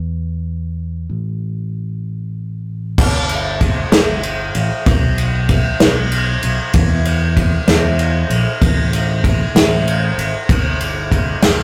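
An up-front acoustic drum kit played with bundle sticks, with a punchy kick, medium-tuned snare, crash and ride, enters at 3.0 s over a round, direct-and-amped fingered electric bass that opens alone, giving this hopeful indie folk fragment in a straight 6/8 a building arrangement, heard through a rough rehearsal-room recording with warm saturation and moderate studio reverb.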